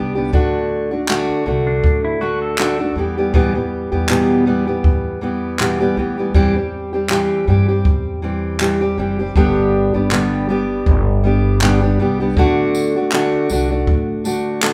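A dark, up-front fingerpicked steel-string acoustic guitar, with audible finger squeak, opens this heartfelt, easy-going acoustic pop excerpt in G major at 80 BPM alongside a woody, thumpy pizzicato upright bass, with a jazz brush kit joining at 0.3 s to add a boomy kick, tambourine and handclaps to its close, natural brush sound. Between 1.7 and 2.9 s a clean, compressed pedal steel guitar played with fingerpicks drifts in briefly on slide and volume swells. The band plays live in one large studio with moderate reverb over a relaxed sixteenth-note swing, moving through D, Em, C/E and G before returning to D.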